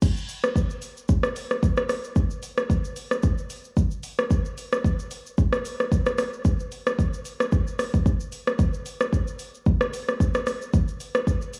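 A relaxed, warm amapiano groove at 112 BPM in 4/4 with a gentle swing on the sixteenths comes from an electronic, produced afro-pop drum kit placed up front, its deep kick, metallic hi-hats, rim clicks, shaker and crash cymbal playing throughout this 11.6-second drop cut from a longer piece, all set in a lush hall reverb with small-room ambience and the worn, warbling pitch drift of old cassette tape.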